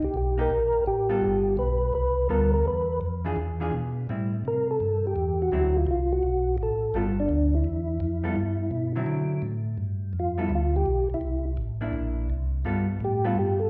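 Swinging eighths in 4/4 at 168 BPM drive this soulful jazz excerpt in G mixolydian. A soft, flute-like tonewheel organ with second-harmonic percussion, chorus vibrato and a slow rotary speaker carries the melody up front. A second tonewheel organ lays down a round, dark bass with key click through its own slow rotary, while a clean, fingered hollow-body electric guitar accompanies lower in the mix from 0.4 s; the organ takes a solo from 9.8 s over G7 and C9, all in the wet reverb of a recital hall.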